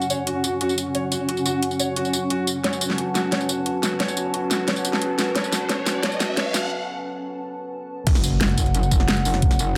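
Dark technical drum and bass with a mechanical, tense mood, cut from a longer piece and built as a long build-up that breaks into a drop. A moody, detuned analog pad holds sustained chords throughout with subtle chorus and sidechain pumping, while a blurred, evolving granular cloud pad drifts alongside it with its own reverb. A felt-muted upright piano plays soft, intimate arpeggios through a low-pass filter and tape echo, its action noise audible. The dubstep drum kit sits up front with a huge snare, metallic hats, crash and tambourine, rolling into a drum fill as a background riser climbs before a short break at 6.7 seconds. At 8.1 seconds the drop hits with an impact, a knocking, tape-warm electronic kick and an aggressive, saturated wobble bass on F# that snarls up front with chorus. The whole mix sits in a moderate digital room with a clean, filtered low end.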